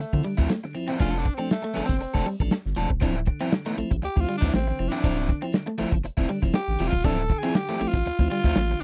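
Funk in D minor at 119 BPM with a sly, dry 1970s studio feel, this short cut from a longer piece features a raspy, growling tenor saxophone soloing over a dark, up-front soul drum kit, a thick saturated sub bass, a crunchy overdriven guitar, a twangy electric guitar riff at the edge of break-up, and piping tonewheel organ stabs with key click and a stopped rotary speaker, moving between Dm9 and F6 chords.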